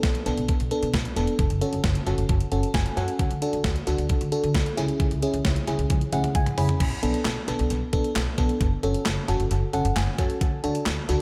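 A clean 12-bit drum machine drives this cool synth-pop excerpt at 133 BPM in a straight 4/4, its thumpy kick, medium-tuned snare, handclaps, hi-hat, toms and crash sitting up front with a large-room sound and dub echo, while a woody, pizzicato upright bass carries the low end. From 0.3 s an FM electric piano layered with a soft pad adds lush, dreamy, detuned chords through chorus, phaser and dub echo, cycling Bm7, F#m, D and C#m in B dorian. The drums and piano fill together at 5.9 s before a second section opens at 6.8 s, all in an echo-heavy mix with light reverb.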